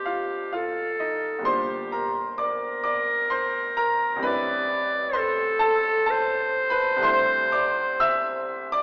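Set in a gently swaying triple metre, this short passage moves with a rubato feel that lets the pulse stretch and settle freely. It is a classical, impressionist duo cut from a longer piece, wistful and hazy in mood. A bright clarinet carries the melody up front in a classical solo style, staying within a compact range from G4 to D5 across the full 8.7 seconds. Beneath it, a clear grand piano provides accompaniment over a broad span from deep G1 up to E6, sitting present alongside the lead. The harmony drifts through Cm9, Gm7 and Am11 before resting on C69 at 7.1 seconds. The duo sounds as if heard in a wet recital hall with a 1.4-second reverb tail, yet filtered through an AM radio tone that lends the whole scene a faded, distant quality.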